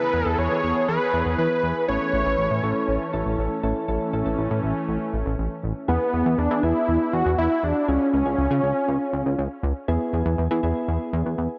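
A straight 4/4 pop groove carries this melancholic, nocturnal fragment, cut from a longer piece and bathed in a lush hall reverb that leaves the whole mix dreamy and soaked. Up front, a thick, detuned sawtooth unison lead with vibrato sings the melody through a diffuse ambient delay until 9.6 seconds. Beneath it sit round, warbling electric-piano-like synth keys and a glossy, retro chorused bass of pulse and sawtooth tones with a filter sweep, while a smooth analog pad holds sustained chords until 5.9 seconds as the harmony moves from E to A, then back to E and on to C#.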